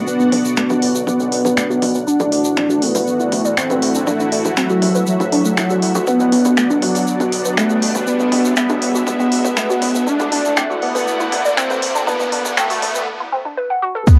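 A bright, detuned unison lead, a full-bodied sweeping pad with a slow attack and a fat, nasal analog bass open this driving, dramatic melodic techno build-up at 120 BPM, moving between Bm and Dadd9 under filter sweeps and a soft tape haze, while a woody wave-folded pluck arpeggio, a grainy egg shaker and a layered techno kit of congas, finger snaps, smooth hi-hats and ride cymbal fill out a small booth room, a background riser climbs from 1.4 seconds, the bass drops out for a break at 13.1 seconds, and a punchy, up-front electronic kick arrives with a faint, gritty tambourine at 14.1 seconds just as the cut ends.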